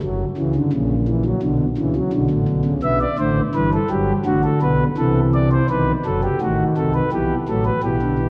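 A steady, straight 4/4 pulse at 84 BPM carries this serious, solemn baroque-style fugue in E minor, a short passage cut from a longer piece and played entirely on solo pipe organ. The principal stop sits up front with a smooth, chiffing baroque voicing, ranging from a deep F#1 to E5 as the harmony moves from F#7 through Bm and B7 to settle on Em at 7.1 seconds. A long church reverb surrounds the whole recording, while the worn cassette tape lends it a warbly pitch drift.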